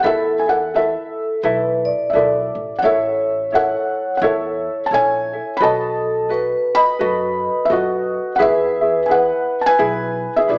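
Hawaiian music in a relaxed, dreamy mood, moving at 86 BPM in 4/4 with a swung eighth-note feel, taken from a longer piece. A felt-muted upright piano carries the melody up front, its tone soft and intimate, with the audible action noise of the instrument giving it a natural, close presence. Alongside it, a vibraphone played with soft mallets adds a second line, metallic and ringing with a slow motor vibrato. A thumb-plucked ukulele supplies light acoustic accompaniment, while a pizzicato upright bass with steel strings sits low in the mix, woody, dark and thumpy. All four parts play throughout the 10.6 seconds over a progression of Esus4, A, B7 and E, heard through light reverb and a small speaker sound.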